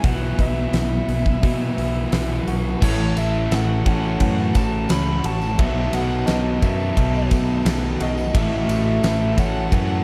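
A straight 4/4 pulse at 87 BPM carries this hazy, blissful shoegaze and dream pop excerpt in A lydian: an up-front arena drum kit with a fat snare and punchy kick sits beside a growly picked bass, a thick chorused fuzz guitar and a reverse-reverb overdriven guitar play riffs in the background, a very quiet direct-recorded clean guitar arpeggiates, a biting lead guitar with overdrive and digital delay sings the melody, and a morphing, detuned wavetable pad sustains chords, while at 2.8 s a double-tracked crunchy guitar and a distant, jingly tambourine join as the chords move from Bsus4 to A6 and B7sus4 in a dark production with light small-room reverb.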